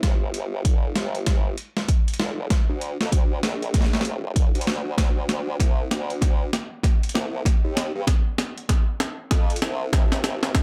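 A swung sixteenth-note groove in 4/4 drives this glitch hop excerpt, a swaggering, funky build-up that runs as one long drum fill across its 10.6 seconds. A punchy, layered electronic kick sits up front beside a gritty, pitched-down sampler-style kit of hi-hat and medium-tuned snare, compressed and re-recorded in a large room. Underneath, a saturated formant-sweep wobble bass blending pulse and sine tones, with a fast attack, chorus and a high-pass filter, holds sustained notes from F1 to G2 in a dry mix.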